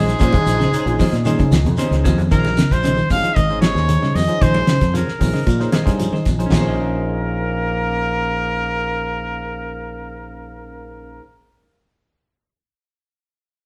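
A driving, funky afrobeat groove in Bb minor at 114 BPM opens on a Bbm11 chord, with a clear, punchy trumpet carrying the melody up front. A bright trombone and a raspy, gritty baritone saxophone with scooped notes play a second line beneath it, the saxophone very quiet. Underneath, a twangy electric guitar at the edge of break-up plays arpeggios, a dark, clean semi-hollow guitar with spring reverb adds stabs, a round fingered bass holds the low end, and a barky tine electric piano fills in the accompaniment. A damped 70s kit with a fat snare, tight kick and rolled-off top drives the groove alongside grainy shekere and ringing, hard-hand congas; during a drum fill starting at 1.3 s the saxophone and trombone drop out. The trombone rejoins at 6.5 s, and around that point the drums, hand percussion and arpeggiated guitar fall away, leaving the horns, bass, semi-hollow guitar and electric piano. 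The band plays live in a stone room whose moderate reverb gives the trumpet a distant, roomy edge.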